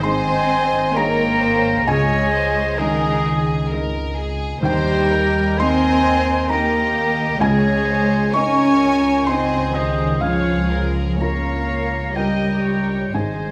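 Bathed in a recital hall's reverb, this moving, uplifting cinematic excerpt drifts in a rubato 3/4 at 64 BPM, with a rich violin section carrying the melody as an airy flute, a clear solo oboe and a second violin section weave supporting lines, while a felt-muted upright piano and background violas accompany, a mellow French horn section holds chords, and a dark cello section and double basses anchor the bass.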